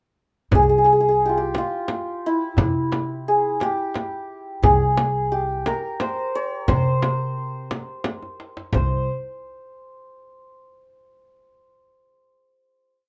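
A stately, passionate Persian modal ensemble piece opens at 0.5 seconds with upright bass, frame drum and tombak sounding together, moving in a slow, straight 6/8 at 58 BPM in the dastgah of homayun on C. The santur joins at 0.6 seconds, carrying a hammered, shimmering modal melody with ornaments, ringing up front and sitting highest in the mix. Beneath it, the pizzicato upright bass gives a woody, dark, thumpy tone from its gut strings, playing on the low drum strokes, while the deep, close and dry frame drum sits forward with a pattern of low and high strokes. The tombak, tight and very quiet in a small room, adds its own low and high stroke pattern further back. A drum fill from 8.1 to 8.7 seconds leads into a final note that rings out to 10.8 seconds under light reverb, closing this complete short piece.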